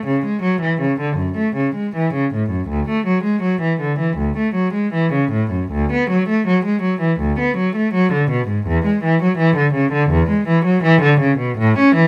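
This classical, baroque-style suite movement for unaccompanied cello feels dance-like and radiant, moving in four with a flexible rubato that lets the beats stretch and give. A single bowed cello carries the whole 12.1-second excerpt up front, its warm, focused tone shaded with vibrato and a smooth top, ranging from low D2 up to C#4. Light reverb lends the solo line a gentle sense of space.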